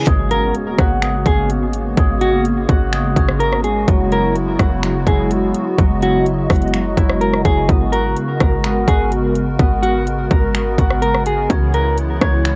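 A half-time 4/4 groove at 126 BPM from an up-front trap drum kit of hard-clipped kick, metallic hi-hat, finger snaps and rim clicks anchors this melancholic, ethereal cloud-rap excerpt in G# minor, where a deep, boomy 808-style bass, a hollow, flute-like pad with warbling ensemble chorus and sidechain pumping, a dark, clean electric guitar melody, and ringing fingerpicked concert harp arpeggios (guitar and harp both softened by low-pass filtering and analog delay) drift over chords moving from G#m11 to F#9sus4, back to G#m11 and on to C#m7, while a very quiet reverse cymbal and impact mark the first 2.0 seconds of this dry, cassette-worn home recording.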